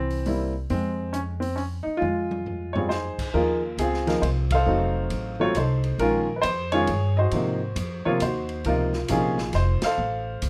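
A woody, polished upright piano sits up front carrying the melody in this moody, swinging jazz piano trio fragment in F minor, moving at 136 BPM in a lilting 3/4 swing. Pizzicato upright bass with steel strings gives a woody, warm, acoustic low end, while a small-room drum kit with dark cymbals, a boomy kick and a rolled-off top stays low in the mix and plays a fill at 2.0 seconds. The band hits accents at 4.4 and 9.8 seconds as the harmony moves through rich minor and dominant colours, all framed by light reverb.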